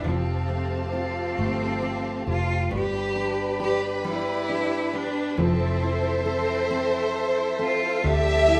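This rough home-demo mix sits in a moderate studio room, with plate reverb blooming around most of the acoustic parts, in a short cut from a longer heartfelt, swaying pop ballad in six-eight. A clear, focused solo cello carries the melody up front with vibrato, over a full-bodied jumbo steel-string acoustic guitar that is fingerpicked beneath it. A lush studio string section holds distant sustained chords with portamento, while a direct-recorded clean electric guitar adds very quiet, compressed picked arpeggios. A vintage foam-muted fingered electric bass anchors the low end, dark, round and punchy in the front of the mix. At 2.7 seconds an expressive violin section enters with a second line, its bowed vibrato carried on plate reverb and tape echo as the chords move from Fadd9 through G and Fmaj7 to Dmadd9.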